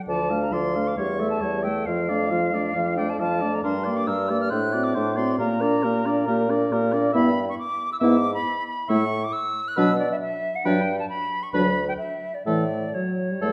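A quick classical-period movement for wind quintet, this cheerful, lively passage in D minor moves at 136 BPM in 4/4 with a rubato feel, tuned to A4 = 436 Hz and cut from a longer piece. The silver concert flute carries the melody up front, airy and bright with vibrato and a crisp attack, while the oboe sounds a warm, distant and roomy second line beneath it. The clarinet adds close-miked accompaniment in the background, joined by the mellow, smooth-topped French horn, and the bassoon holds the bass up front with a clear tone and light vibrato. Every part plays from 0.1 to 13.5 seconds, and the harmony travels from D minor through G minor, E minor and B minor to a G major seventh before settling on A. A recital hall reverb gives the ensemble a wet, resonant setting.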